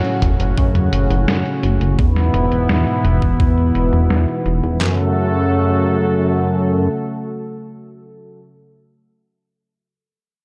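A dreamy, reverb-soaked mix in a lush hall opens this short synthwave excerpt, driving yet nostalgic, at 85 BPM in straight 4/4 and F# minor, moving from F#m to E and back to F#m at 4.8 seconds. A smooth, warbling analog pad built from detuned sawtooth and wave-folded sine tones holds sustained chords up front with a slow attack, chorus and sidechain pumping, and it lasts until 8.4 seconds. Beneath it, a glossy, evolving chorused synth bass mixes pulse-wave and sawtooth tones with pulse-width modulation and a fast, plucky filter attack, also pumping to the sidechain, and it carries a filter sweep through its first 4.8 seconds. Two detuned 8-bit drum machines, sampler-style and tape-warm, re-recorded in a small room, share the beat. One drum machine sits up front, playing low-pass-filtered hi-hat, snare and toms under a filter sweep. The other plays handclaps, a kick and a medium-tuned snare, and drops out at 5.0 seconds, leaving pad and bass to carry the closing bars.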